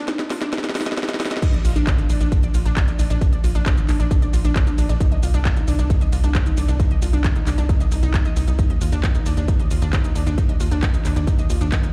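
Soaring and euphoric, this uplifting trance excerpt at 134 BPM opens with a short build-up, where a drum fill and a filter sweep on the bright, lush unison pluck arpeggios lead into the drop at 1.4 seconds. The dark, detuned sawtooth sequencer bass enters at 1.5 seconds, tight and up front with sidechain pumping, beneath the pumping, delayed pluck as the harmony moves from Bb to Cm. A heavy, layered kick sits forward in the mix, joined by a techno kit of cracking snare, smooth hats, handclaps, shaker, ride and crash cymbals, all bathed in a large studio reverb that suggests a big sound system in a bare room.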